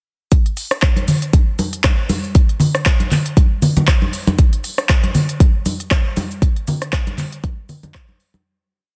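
From 0.3 seconds, a deep, layered electronic kick sits up front, driving a four-on-the-floor pulse at 118 BPM in 4/4 with a 16th-note swing, alongside a programmed deep house kit of handclaps, smooth hi-hats, rim clicks and shaker. At 1.0 seconds, thick-skinned, medium-tuned acoustic congas played with hard hands join, interlocking on high and low drums, their small-room sound adding an earthy, hypnotic and spiritual pull to this short house piece. The mix is dry, dense and heavily limited, and the whole groove fades out from 5.7 seconds.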